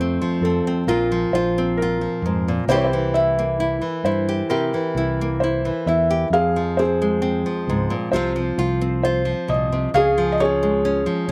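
In a straight 4/4 at 66 BPM, this reflective, heartbroken acoustic folk-pop ballad, cut from a longer piece, sets a mellow, intimate felt-muted upright piano melody over bright, up-front fingerpicked nylon-string guitar with audible finger squeak and a warm, direct fingered electric bass, all recorded outdoors with light reverb as the chords move from F through Bbsus2 and C7 to a heartbroken turn to Fm, then Csus4 and Db.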